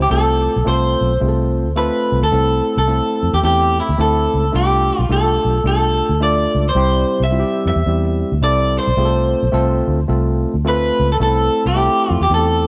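A bright, twangy electric guitar through a small old amp carries the up-front melody, with spring reverb and analog delay, in this uplifting, swung 1960s-style soul passage, backed by a dark, round, foam-muted vintage fingered bass and a barky, gritty overdriven tine electric piano over a chord cycle of F, Am/C, Dm and C, all set in a light digital ambience.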